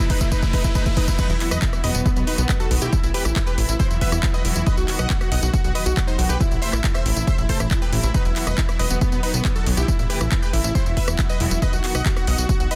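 In a straight 4/4 at 138 BPM, a punchy, up-front electronic kick and a tape-warm house kit of crash, handclaps, hi-hat, rim click and tambourine drive this euphoric uplifting trance excerpt, which opens on a faint riser and drum fill before the drop lands at 1.2 s with an impact. Throughout, a detuned supersaw stab carries the melody, with dub echo, over reedy, gut-string studio strings holding sustained chords in the background, while a funky analog bass with a filter pluck and a very quiet, lush unison pluck second line join in. Sidechain pumping runs through the stab, strings, bass and the kit's hats, percussion and cymbals as Am, Esus2 and B chords cycle inside a dense, heavily limited modern master with digital ambience.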